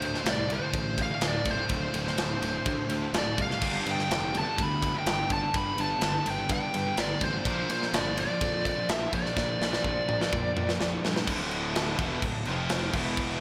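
A straight 4/4 heavy metal groove drives this dark, aggressive fragment, with a tight, saturated drum kit up front and a growly, fuzzed fingered bass underneath, while a scooped high-gain guitar, a very quiet distorted electric guitar and a double-tracked fuzz guitar stack their picked riffs behind. A smooth, overdriven lead guitar carries the melody until 11.0 seconds, with a hushed bowed string section floating softly beneath on sustained chords. A drum fill from 9.4 seconds leads into a brief closing passage at 11.3 seconds, all set in a lush hall reverb that gives a big arena sound.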